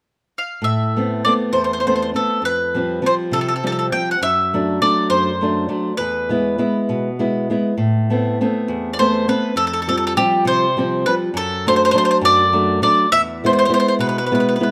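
Passionate and wistful, this Italian folk serenade in A minor moves at 68 BPM in a rubato 6/8, cut from a longer piece. A bright bowl-back mandolin, picked on its double strings, carries the melody up front from 0.4 seconds, while a fingerpicked nylon-string guitar with fresh strings and a small, warm tone accompanies from 0.6 seconds. Close, detailed miking and light reverb frame two sections that each cycle through Amadd9, Fsus2, D/F# and E, with the second starting at 7.8 seconds.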